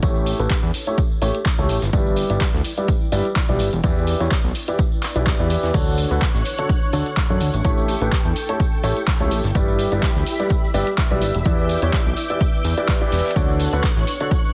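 A punchy, tape-warm electronic kick drives this uplifting piano house excerpt at 126 BPM in 4/4 with a lightly swung 16th feel. The drum machine adds crash, handclaps and hi-hat, while a very quiet brushed kit with snare, hi-hat and tambourine, plus a close, dry tambourine, sit far back. A fat, detuned sawtooth bass with sidechain pumping and a brilliant, woody upright piano riff, also pumping and low-pass filtered, carry a looping A7, G6, Em7, Dmaj7 progression in D major. A mellow, cloudy granular pad drifts in at 0.4 s, and a silky, chorused analog string pad with vibrato enters at 5.7 s, all within a small room and a heavily compressed, radio-like sound.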